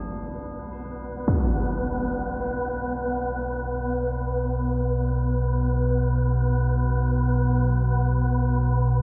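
Cavernous and unsettling, this dark ambient drone fragment sets a deep, warbling rumble against an airy, breathy wind-like texture, while very quiet, metallic tubular bells ring out solemn arpeggios and a huge, dark impact lands at 1.3 seconds, all sunk in a vast cathedral reverb.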